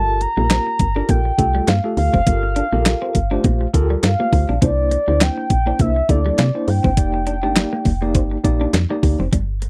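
Early-eighties boogie funk with a funky, danceable swing, this short excerpt rides on a crisp 8-bit drum machine with a thumpy kick, handclaps, hi-hat and snare. The drums sit tape-warmed and up front beside a woody, round FM bass with a fast, decaying attack. A horn-like sawtooth synth lead carries the melody with a soft attack, vibrato, chorus and slapback echo, while a worn, slightly out-of-tune tine electric piano, lightly overdriven with medium tremolo through a combo amp, plays accompaniment over Gm9, C9 and F13sus4. From 0.2 s a bright, clean, compressed semi-hollow guitar picks a riff through analog chorus, all captured in a dry, close 1970s-style studio sound.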